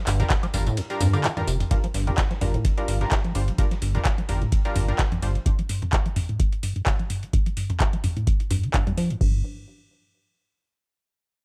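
Acid house at 128 BPM in G minor, raw and gritty, with a light swing on the sixteenths and a dry, close sound. A deep, rubbery square-wave acid riff carries the track with a resonant filter pluck and dark saturation, colored by cassette tape and analog delay, and a filter sweep runs across it from 1.7 to 9.2 seconds. Beneath it a round, sustained triangle-and-sine bass pumps against the sidechain, dropping out at 5.4 seconds before a brief return at 9.2. An up-front electronic kick and a booming analog drum machine with metallic hats, handclaps, tambourine, toms, woodblock and crash share a tape-warm punch, while a very quiet, pitched-up breakbeat kit adds a high-tuned snare and ride through 5.3 seconds. A nasal, band-passed sawtooth chord stab, detuned and bright with chorus and delay, hits on a Gm7 harmony, and the opening drop pulls the kick out from 0.8 to 1.7 seconds under a short drum fill in this cut from a longer piece.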